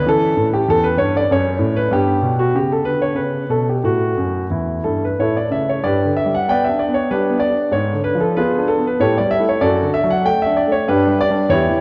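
An intimate, up-front concert grand piano with deep bass and audible action noise plays a dance-like, radiant baroque-style suite movement in a rubato 3/4, passing through diminished chords on its way to a second section at 5.9 seconds, all bathed in a long church reverb and the warbling pitch drift of worn old cassette tape in this short excerpt cut from a longer piece.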